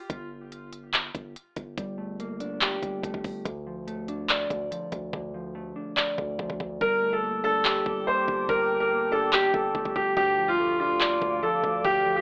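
An overdriven trap kit with a knocking kick, handclaps and crisp hi-hats opens this melancholic, menacing half-time trap excerpt over a deep sine 808 bass, joined at 1.8 s by a dark, clean fingered electric guitar; the hats drop out from 5.1 s, a brilliant grand piano takes the melody up front at 6.8 s, and a moody, warbling vintage pad with chorus settles into the background, all heard through a telephone-like filter in a moderate studio reverb.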